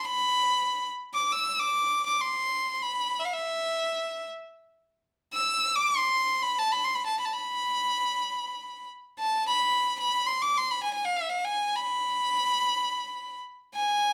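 Persian modal ensemble music in free time, festive and warm in mood, carried here by a lone violin playing solo throughout this 14.1-second excerpt cut from a longer piece. The violin sits close and up front, its bowed tone clear and focused with vibrato, ranging high between E5 and E6. A wet studio reverb surrounds the sound of players performing live together in one room, and the opening phrase returns at 5.1 seconds.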